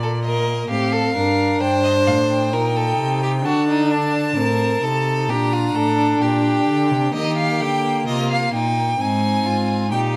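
Two rich, focused bowed violins, the second line sitting up front, open together with a soft-attacked, distant viola sliding expressively and a warm, up-front cello bass in this lively, joyful baroque-style string quartet fugue at 65 BPM, moving from C minor through D7 and Gm to a brighter Eb major at 7.1 s, all carried by vibrato and a wet stone-room reverb in this excerpt cut from a longer piece.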